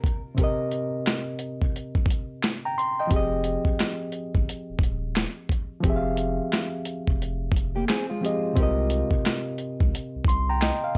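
A dusty, sampler-style drum kit with a thumpy kick, medium-tuned snare, hi-hat and handclaps opens this nostalgic, reflective lo-fi hip hop excerpt at 88 BPM in F minor, sitting up front beside a reedy, barky electric piano pushed through a combo amp, while a dark, clean electric guitar with subtle chorus and tape echo sounds at the very start. At 3.1 seconds a deep, thick sub bass with a fast attack enters as the harmony moves from Cm7 to Fm9, and the guitar returns around 7.8 seconds for a brief second line. The swung groove sits in light reverb with a cassette-tape character.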